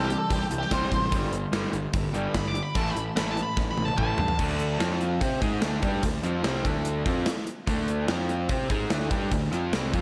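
Confident and sunny, this classic rock passage drives along at 146 BPM in a straight 4/4, cut from a longer piece. A dark, distorted octave-fuzz lead guitar with slapback echo takes a solo for the opening 4.4 seconds, reaching as high as D6, while a crunchy overdriven guitar and a bright semi-hollow guitar sit in the background playing riffs. Underneath, a round, punchy fuzz bass with overdrive anchors the low end, and a polished gated 80s drum kit sits up front with a punchy kick, bright cymbals and an airy gated room sound. A drum fill from 3.6 to 4.4 seconds carries the music out of the solo and into a riff-driven second section built on D5 and F5 power chords. The whole mix is bathed in a moderate concert hall reverb that gives it a big arena sound.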